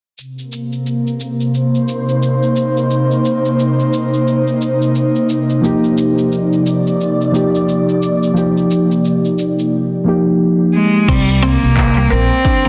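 A swung 16th-note groove at 88 BPM in 4/4 drives this earthy, meditative organic downtempo piece in C minor, with a deep house kit of handclaps, shaker and crash cymbal, and a punchy electronic kick arriving at 11.1 s alongside a woody, thumpy pizzicato upright bass. An airy, breathy pad holds sustained chords with sidechain pumping, muted felt-like synth keys join at 5.6 s with chorus and delay, and a clear, bowed cello takes the melody at 10.7 s over round, bright mallet-like synth pluck arpeggios. Lush hall reverb surrounds a dense, heavily limited modern master, and the cello carries a gritty vintage 12-bit sampler texture.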